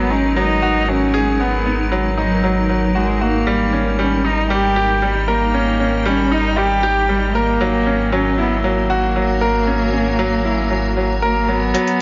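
Softly reverberant and dulled above 7.5 kHz, this cinematic, intimate piano and strings electronica at 116 BPM, cut from a longer piece, sets a woody, up-front upright piano riff with delay and a nasal, low-pass-filtered bowed cello melody with vibrato and portamento over a blurred granular pad and a rumbling detuned saw bass holding G#1 as the harmony moves through G#m7, D#7/G# and F#7/G#; at 11.7 s the bass stops and a metallic, overdriven electronic hi-hat enters.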